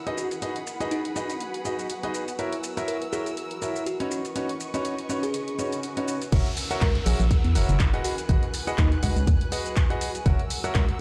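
Piano house at 122 BPM in F# mixolydian, joyful and feel-good, with a swung sixteenth-note groove, cut from a longer piece. From the start a clear baby grand piano plays a riff with long sustain and tape echo, set over lush bowed violin chords in the background and a cloudy, evolving granular pad with its own reverb, all three pumping to the sidechain. A bell-like FM electric piano carries a sparkling melody through chorus, phaser and tape echo, while a dry analog drum machine supplies crash cymbal, handclaps, hi-hat and shaker. The harmony moves through G#m7, F#7 and Badd9, and a background swell and downlifter enters at 5.5 seconds. At 6.3 seconds the drop arrives as a layered, punchy kick and a hollow, dark, organ-like FM bass join up front, the bass also pumping with the sidechain. The mix sits in light digital ambience, sounding as if played on a big sound system in a bare stone room.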